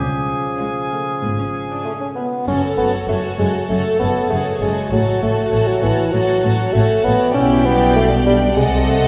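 In a straight 4/4, this sneaky, mischievous film cue takes a playful, whimsical tone and is cut from a longer piece. Oboe and clarinet share a short opening phrase as a second line, the oboe up front with light vibrato and the clarinet more distant in the background, while a dark solo bassoon carries the accompaniment up front. Concert harp arpeggios ring very quietly underneath, with cello and double bass sections holding the bass, the cellos lush and the basses pure and floating. At 0.6 seconds the upper strings enter, all playing sul tasto with a soft attack: a dark violin section carries the melody from the background, a rich violin section adds an intimate second line, and violas float in the distance. A bright triangle sparkles briefly from 2.5 seconds, and the whole ensemble sits further back in a wet scoring-stage reverb as the chords move from C# through F# minor and G/B to a diminished seventh.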